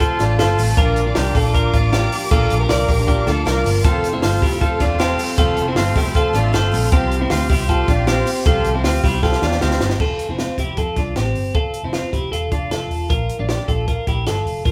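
A live-in-one-room sound with a moderate large studio reverb carries this youthful, bright stretch of jangly indie pop, where a bright, twangy twelve-string electric guitar rings out arpeggios up front beside a compact cocktail drum kit with a punchy kick, high-tuned snare and dark cymbals, over a round, foam-muted vintage electric bass. A reedy combo organ with spring reverb plays accompaniment and adds short fills, while a picked steel-string acoustic guitar and a lush studio string section with vibrato and portamento sit in the background. After a drum fill, the organ, acoustic guitar and strings drop out at about 10.0 seconds, leaving the twelve-string, bass and drums to carry on.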